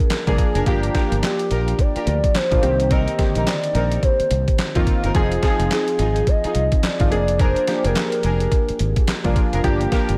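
R&B new jack swing at 107 BPM in F dorian, bouncy and slick with a 16th-note swing, where a hollow, woody clarinet-like synth lead with chorus and delay carries the melody over detuned analog keys with a filter sweep, a round, punchy fretless bass, a gritty, pitched-down boom bap kit with thumpy kick, handclaps and gated reverb up front, and lush bowed string stabs, moving through Bb7, Gm7, Cm7 and Fm7 in a dry mix cut from a longer piece.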